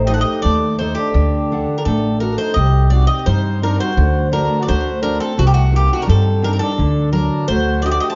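Greek folk in a brooding, bittersweet mood, this short excerpt from a bouzouki band moves at 85 BPM in a straight 2/4, with chords shifting among A diminished, D and C minor. A bright, metallic bouzouki carries the melody with a slapback echo, over a reedy, boxy accordion second line, a full-bodied picked steel-string acoustic guitar with audible finger squeak, and a woody, thumpy pizzicato upright bass sitting up front. All four play together for the full 8 seconds in a moderate recital-hall reverb, and the overall production is dark and warm.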